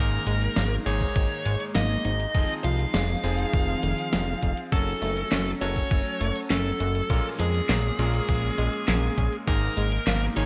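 A dark, smooth electric lead guitar leads this moody, nostalgic synthwave excerpt at 101 BPM in a straight 4/4, its picked, overdriven melody carried on digital delay over the chords Absus2, Fm7, Gbm and Bbm7. Beneath it, a fat, thick analog bass built from detuned sawtooth and square waves sits up front with a moving notch and a filter sweep, while a swirling, full-bodied phased pad pumps against the sidechain in the background, treated with phaser and chorus. A round analog pluck traces arpeggios through chorus and delay, its wave-folded tone sweeping and decaying, and a bright, cutting electric grand piano adds vintage, clangy stabs with its own delay. The layered pop drum kit enters at 0.1 seconds with a fat snare, metallic hi-hats and handclaps, overdriven and washed in gated reverb, and a thumpy, sampler-style electronic kick joins from 1.0 to 9.6 seconds. The whole piece carries a light reverb and a bright, 1980s-style digital production.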